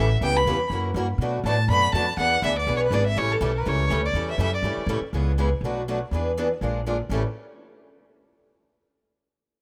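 Swinging and playful, this short cut from a longer acoustic string swing piece has the lilt of jazz manouche. A single bowed violin carries the melody up front with expressive vibrato, sliding portamento and a smooth top, then falls away at 4.9 seconds. Beneath it, two picked acoustic guitars keep the accompaniment going throughout: an old ladder-braced instrument with a boxy, warm character and a parlour steel-string that sounds bright with fresh strings, finger squeak audible on both. A pizzicato upright bass sits up front with a woody, thumpy tone. The harmony moves through a chain of seventh chords, shifting to a new passage at 5.1 seconds and settling on A7 near the close, all under light reverb in a rough home demo mix.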